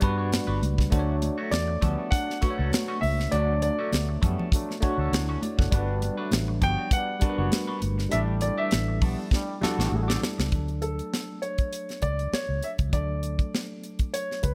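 A tight funk drum kit with a high-tuned snare, a dark, foam-muted fingered electric bass, bell-like tine electric piano, a twangy wah guitar riff at the edge of break-up and mellow, distant trombone stabs open this lush, smooth 1970s-style soul excerpt in D major at 100 BPM with a lightly swung 16th feel, with very quiet congas joining at 0.3 seconds, before a warm grand piano melody enters at 1.5 seconds and, following a drum fill that begins at 9.3 seconds, the guitar, trombones and congas drop out by about 10.4 seconds, leaving drums, bass, electric piano and grand piano to land on a Dmaj7 chord.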